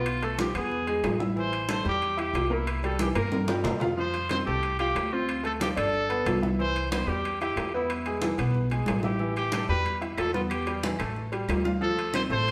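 Sunny, danceable salsa at 184 BPM in C major, cut from a longer piece, with a clear, punchy trumpet up front scooping into its vintage-toned melody over a brilliant, slightly detuned upright piano with audible action noise, a woody pizzicato upright bass, bright hard-hand congas, ringing metal-shell timbales, and very quiet claves entering at 9.5 seconds. A drum fill arrives at 3.3 seconds, and the whole band plays live together in a stone room with a reverberant tail.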